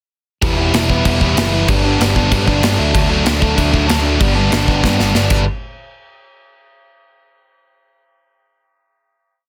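A biting, double-tracked overdriven guitar drives eighth-note barre chords up front through this short, upbeat and rebellious punk rock chorus, backed by a growly, punchy overdriven bass and a studio-room acoustic kit with bright cymbals and a punchy kick, moving through Em, G and D in a dense, heavily limited, nearly dry mix until a drum fill at 4.8 seconds leads into a final hit at 5.5 seconds.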